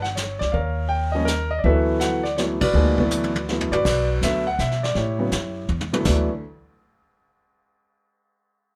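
Playful and sophisticated, this short jazz piano trio fragment swings in three, with a clear concert grand piano carrying the melody up front, its deep bass register and long, natural sustain moving through chords such as Eb9, D69, Bmadd11 and A13. Beneath it, a woody, thumpy pizzicato upright bass and a vintage brush drum kit with dark cymbals and a punchy kick sit in a light reverb. The band hits an accent at 2.6 seconds, and the drums play fills at 3.1 and 5.7 seconds.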